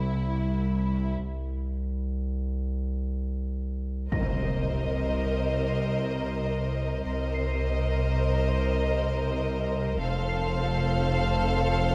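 A rich, lush violin section carries the melody over a clear, intense double bass section, a background cello section and a deep, saturated sub bass drone, while a delicate, bell-like celesta glints faintly in the background, opening this uneasy, tense excerpt from a suspense film score in free time. After a break from 1.2 s, a huge, bright impact hits at 4.1 s as a second, up-front violin section enters with a focused second line. At 10.0 s a distant, intense violin section adds a high texture, all set in a moderate scoring-stage reverb.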